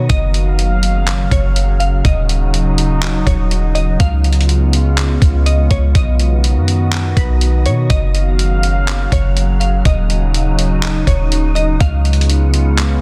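A glassy, crystalline pluck melody, a warbling tape-like pad, a deep 808-style bass and a breathy, wind-like tuned noise texture begin together at 0.0 seconds, with a trip hop sampler-style drum kit joining a moment later in this floating, blissful slice of atmospheric cloud-rap. The tempo sits at 123 BPM in 4/4 with a half-time feel, and the harmony circles through F#maj7, D#m7, C#7 and Bmaj7 before returning to F#maj7, D#m7 and C#7. The pitched-down, gritty drums carry a thumpy kick, handclaps and hi-hat, with soft clipping on the snare, while the boomy sine bass with its noise layer sits up front beside them. Above, the nostalgic, lo-fi pad holds sustained sawtooth and triangle chords, detuned and slow to bloom, with chorus, built-in reverb and sidechain pumping. The nasal, full-bodied digital pluck carries chorus, digital delay and a filter sweep, while the airy noise texture stays in the background with its own reverb. 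The mix is dry overall and densely limited in a modern master, and this excerpt ends at 13.0 seconds as part of a longer piece.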